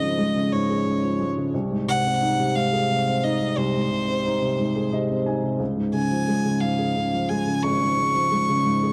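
A clear, vibrato-rich bowed violin sings the tender melody with a touch of tape echo over a woody, intimate upright piano, whose audible action noise and long sustain fill the gaps at 4.6 to 5.6 seconds and again at 8.7 seconds, in this heartfelt pop excerpt in Db major at a gentle 59 BPM in 6/8, moving from Db to Ab/C and back in a dry, close small-room 1970s-style studio sound.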